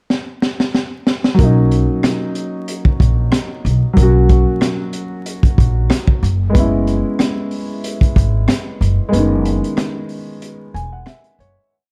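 Boom-bap hip-hop at 93 BPM in B major, confident and warm, with a swung 16th feel and a dark production touched by small-room reverb and vinyl crackle. A crunchy, gritty breakbeat kit opens with a fill before a punchy kick and high-tuned snare layered with rim carry the backbeat. It is soon joined by a mellow, boxy grand piano holding rootless chords like a sampled loop and a woody, thumpy pizzicato upright bass playing a deep looped line, moving from Bmaj7 to F#9sus4, until a break and fade-out arrive at 9.1 seconds and a short piano fill enters at 10.4 seconds.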